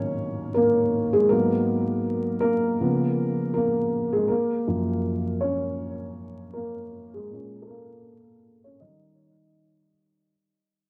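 This hip hop excerpt is melancholic and hazy, moving at 80 BPM in Eb minor with a swung 16th-note feel, and a felt-muted upright piano plays alone from 0.0 to 10.3 seconds. The piano sits up front with a dark, intimate, vintage tone shaped by thick felt, cassette tape colour, a low-pass filter, analog delay and a filter sweep. It travels through chords such as Ebm7, Gbmaj7 and Eb7 inside a small room with light reverb and vinyl crackle, fading out across its full length.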